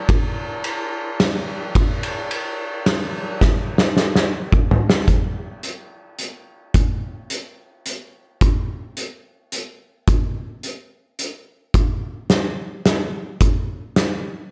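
Rock in 3/4 at 108 BPM with a straight feel, this melancholic, cinematic fragment features a loose indie drum kit of kick, snare, hi-hat, ride and toms, sitting up front in a pumping studio room with light reverb. The punchy kick, medium-tuned snare and dark cymbals carry a gritty, saturated character with a rolled-off top. A drum fill from 3.4 to 5.1 seconds leads into the second section, and the kit plays on until 14.1 seconds.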